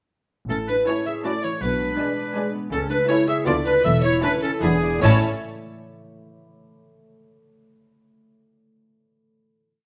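In a straight triple metre, this magical, whimsical film cue sets a plucked harpsichord on the melody, doubled in unison by a clear oboe, a dark violin section and an airy flute section, while a mellow clarinet adds sixths alongside bright, ringing harp arpeggios, a pizzicato cello section and bowed double basses; a rich violin section, a viola section and roomy French horns playing after-beat chords join at 0.9 s, and the piece closes on a final chord at 5.0 s in a stone room.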